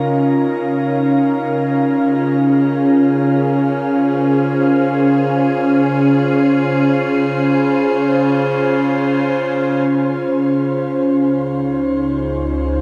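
Ambient music in free time, this serene passage is cut from a longer piece and rests on an evolving wavetable pad that holds sustained chords from the start through 12.8 seconds. The pad is bright and up front, its detuned, triangle-based tone morphing, with slow attacks, long releases, chorus and its own reverb. A filter sweep moves through the pad across the opening stretch, and the harmony shifts to a new chord at 9.9 seconds, where the second section begins. At 11.9 seconds a deep, ominous drone enters in the bass, a dark, rumbling, wave-folded blend of triangle and sawtooth that sits far beneath the pad with its own reverb. A glistening shimmer reverb with a 6.8-second decay washes over the whole recording, giving it a drenched, floating sense of space.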